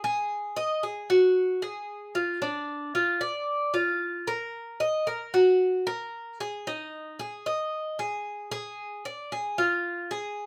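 Warm and nostalgic, this brief excerpt of Latin music is cut from a longer piece and moves at 113 BPM in a straight 4/4. A lone Cuban tres carries the whole 10.5 seconds, playing solo in the range from D4 to Eb5. Its acoustic, picked tone rings with a metallic edge from the doubled strings, some of them set an octave apart. The instrument sits up front in the sound, close and present. A moderate studio reverb of about 0.6 seconds gives the tres a touch of space around it.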